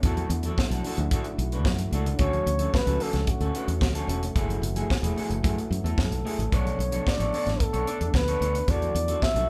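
The breathy flugelhorn takes the melody from 2.2 seconds, its dark, whispered tone carrying scooped notes with a soft attack and an intimate, pop-style delivery over a driving disco groove at 111 BPM in B dorian. Underneath, a tight funk drum kit sits up front with a dry, high-tuned snare and a compact kick, while a fingered electric bass adds a round, punchy, foam-muted low end. An electric guitar through a small old amp supplies bright, twangy, slightly broken-up picked accompaniment, and a mellow French horn section holds smooth sustained chords in the background with light vibrato. Very quiet congas with a thick skin add a soft layer of percussion. The harmony moves from E9sus4 through Dmaj7, F#m9 and Bm9 before returning to E9sus4, and the danceable excerpt has the feel of a band playing live in one room with light reverb.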